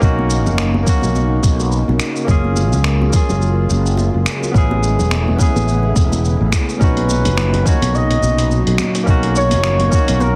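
A swung sixteenth-note groove of gritty, tape-warm finger snaps, hi-hat and shaker over a deep electronic kick and very quiet soft-handed congas drives this relaxed, sunny sunset chillout fragment. A growly, punchy fretless bass sits up front, a barky, lightly overdriven electric piano with digital delay comps through a Bmaj9, F#maj9 and Amaj9 progression, and a silky, dark string machine holds sustained chords in the background, while a mellow, distant flugelhorn with light vibrato plays a short solo line over the band from 6.8 seconds, all under light reverb and a heavily compressed, radio-like finish.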